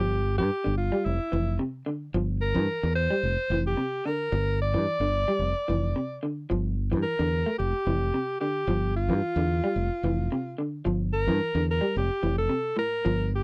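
Intense and driving, this afrobeat excerpt moves at 110 BPM in a straight 4/4 feel, centered in G dorian and cut from a longer piece. A clear, forceful alto saxophone carries the melody up front, its solo line smooth at the top with a pop-style vibrato and a punchy attack. Beneath it, an electric guitar through a small old amp picks dark, slightly broken-up arpeggios, while a fingered electric bass sits round and direct in the foreground, its tube saturation adding grit to a punchy low end. All three parts play together from the start through about 13.4 seconds, cycling through G5, F5, Gm7 and F-based chords that close on Fmaj9. The sound is dry and close, like a 1970s studio session with little reverb.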